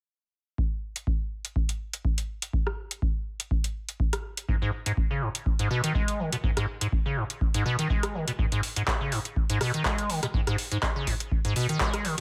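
Raw and driving, this acid house fragment, cut from a longer piece, moves at 123 BPM in 4/4 with a light 16th-note swing, set in G# minor. A deep, tape-warm electronic kick drum opens at 0.6 s, sitting up front, and a booming analog drum machine follows at 1.0 s with handclaps, metallic hi-hats and rim clicks. At 4.5 s a liquid acid bass riff arrives, squelchy yet smooth, a resonant square-wave line with a fast attack, decaying notes and filter sweeps, ranging from G#2 to G#3. Lush chorus, delay and sidechain pumping color the bass and give it a bright edge against the dry drums. The mix is close and dry, with little reverb, and the arrangement shifts into a second section at 8.4 s before the kick stops at 11.9 s and the remaining parts run on to 12.2 s.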